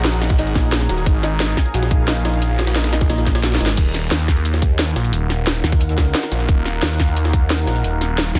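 A swirling, phased saw bass and a deep, moody pad with sampler grit open this dark, aggressive excerpt of technical drum and bass in Eb minor at 177 BPM, where a tight, up-front kick, a cracking snare with metallic hats, a faint pitched-up jungle kit, a felt-muted piano arpeggio with dub echo and a breathy pad in the background until 3.8 seconds drive over Ebm7 into Ebm, while a metallic FM wobble bass enters briefly at 0.6 seconds and returns from 3.1 to 6.1 seconds across a drum fill, all pressed into a dense, heavily limited master.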